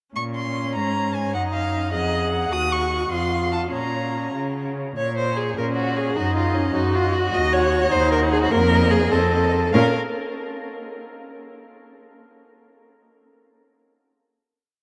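At 0.2 s a violin, viola and cello begin together in this quick, restless classical-period movement for string quartet in B-flat minor, moving at 100 BPM in 6/8. The violin sings a warm, vibrato-laden melody with soft attacks and portamento, the viola weaves expressive inner lines and sustained chords, and the rich cello walks beneath with an even, smooth bass, joined at 0.8 s by a second violin carrying a focused counter-melody. The urgent opening idea is heard twice in a vast, echoing cathedral acoustic before the quartet settles on a closing B-flat minor chord at 9.7 s.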